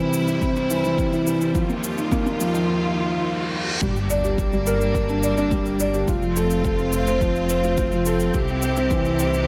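A straight 4/4 pulse at 106 BPM drives this intimate, moving piano-and-strings electronica, cut from a longer piece and carried by a deep, produced electronic kick and a faint shaker. Up front sits a felt-muted upright piano playing a mellow riff, its thick felt and audible action noise giving it a vintage closeness, softened further by tape echo. Behind it, a distant but bright studio string section holds lush, bowed chords with vibrato and a biting edge, breathing with sidechain pumping as the harmony moves from C through Ebadd9 to Gm, F and back to C. A very quiet riser and reverse cymbal shape the build-up, the cymbal arriving at 2.7 s before the drop lands at 3.8 s with a sub-drop impact. At that point a dark, detuned sawtooth bass enters with a rumbling, beating low end and its own sidechain pumping, all set in a moderate echo-chamber reverb.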